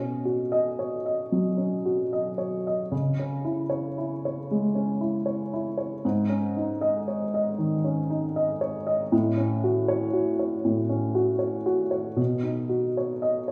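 A solo upright piano opens the recording, its woody, slightly detuned tone sitting present and up front in the mix. This is neoclassical minimalist piano in C# minor, wistful and intimate, moving at 77 BPM in 4/4 with a loose rubato feel. The piano covers the range from G#2 to D#5, and its sound has a warm character. The harmony moves from Badd9 to C#m, G#sus4 and F#m/A before returning to Badd9 at 12.2 seconds. A generous recital-hall reverb with a 1.5-second decay surrounds the instrument, giving the impression of a church or concert hall. The 13.5-second passage is cut from a longer piece.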